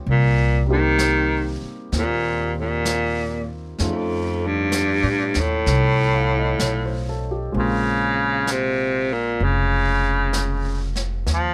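A slow swung 4/4 at 64 BPM carries this romantic, intimate jazz ballad excerpt, where a breathy, whispered baritone saxophone with vibrato and a soft attack sits up front over a clear grand piano with audible action noise and long sustain, a woody pizzicato upright bass, and a vintage brush kit with a rolled-off top on snare and hi-hat, recorded close and dry as the chords move from Cm7 through F7b13 to Bbm7.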